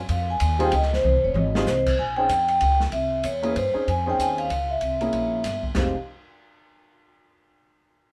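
A ringing, metallic vibraphone played with medium mallets and its motor off carries the melody in this moody, cool small-group jazz waltz, a brief cut in F minor at 191 BPM in 3/4 with a swung eighth-note feel. A woody pizzicato upright bass sits up front, a warm grand piano with audible action noise joins at 0.6 s to comp through changes such as Fm9, Bbm7 and Dbmaj9, and a dark, smooth acoustic drum kit with a boomy kick adds a fill from 1.0 to 1.7 s. Moderate studio reverb gives the group a close, small-room sound.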